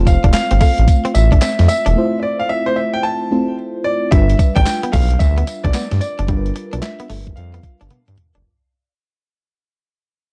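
A clear, intimate grand piano melody with audible action noise opens this punchy, slick new jack swing excerpt at 111 BPM over a mellow FM electric piano with chorus and phaser, a smooth sawtooth synth bass up front, a bright, compressed clean electric guitar riff with lush chorus, and a gritty, pitched-down boom bap sampler-style kit with a thumpy kick, high-tuned snare, handclaps and tambourine, moving from Fmaj7 to G7 through a break at 2.0 seconds, a fade-out from 4.1 seconds and a closing drum fill at 7.9 seconds, all within a dark production bathed in digital ambience.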